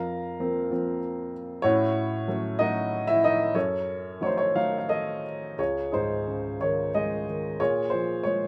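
Classical solo piano in Db major, this tender, lyrical fragment from a longer piece moves in a rubato 6/8 at about 57-64 BPM, with a warm upright piano sitting up front in light reverb, its woody, vintage tone and audible action noise giving an intimate feel as it spans Db2 to Bb5 through chords such as Fsus4, Gbm6 and Bbm7, with a new section arriving at 5.6 seconds.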